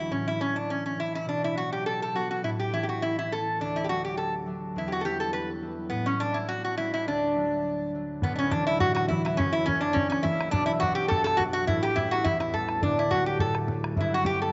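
Rollicking and lively, this Celtic folk reel in D major drives along at 207 BPM in 4/4 with a light swing on the eighth notes, and it is cut from a longer piece. A lap resonator guitar carries the melody up front, its metallic, nasal slide tone played with fingerpicks, while a concert harp supports it throughout with fingerpicked, ringing accompaniment reaching down to deep bass notes. At 8.2 seconds a mellow accordion joins in the background with a reedy, full second line touched by slapback echo, and a boomy bodhran enters at the same moment, close and dry. The harmony moves through chords such as Bm, Emadd9, F#7 and A7 before settling toward D and closing on Gmaj7. A wet plate reverb with a long tail gives the whole a roomy sheen, and the top end is rolled off for a soft, rounded sound.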